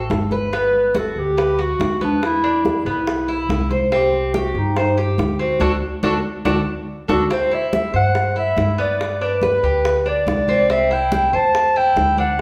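A large studio's lush reverb sets this relaxed, sunny Cuban son and guajira passage at a distance, moving in straight 4/4 at 142 BPM as it lifts from a longer piece. A mellow, up-front solo clarinet carries the melody with vibrato, scooped notes and a soft attack, while the picked, metallic double strings of the Cuban tres spin arpeggios beside it and a woody, thumpy pizzicato upright bass anchors the low end. Ringing congas and tight, high-tuned bongos played with soft hands fill out the percussion, and the band hits an accent from 5.6 seconds, capped by a drum fill that leads into the new section at 7.3 seconds.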